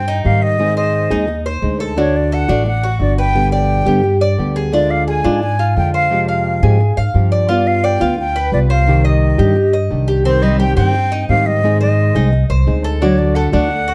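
Nostalgic and danceable, this latin excerpt moves briskly in a straight four, with an airy, vibrato-laden concert flute carrying the melody up front over a woody, pizzicato upright bass and the bright, metallic arpeggios of a Cuban tres. A full-bodied, fingerpicked nylon-string guitar sits in the background as accompaniment, and a second, small-sounding nylon-string line joins at 10.3 seconds as the opening chord sequence of Cm, Ab and D returns. Light reverb and tape saturation give the production a dark, warm tint.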